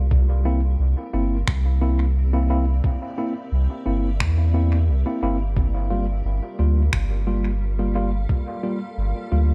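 A dry ambient dub fragment at 88 BPM, meditative and deep, where a round, up-front sub bass sits under a muffled, thumpy kick, a worn, slightly out-of-tune tine electric piano plays lightly overdriven stabs through dub echo from 0.5 seconds, electronic finger snaps with their own echo arrive at 1.5 seconds, and a faint, blurred granular cloud pad holds sustained chords as the harmony moves from C7 to Gm7 at 5.6 seconds.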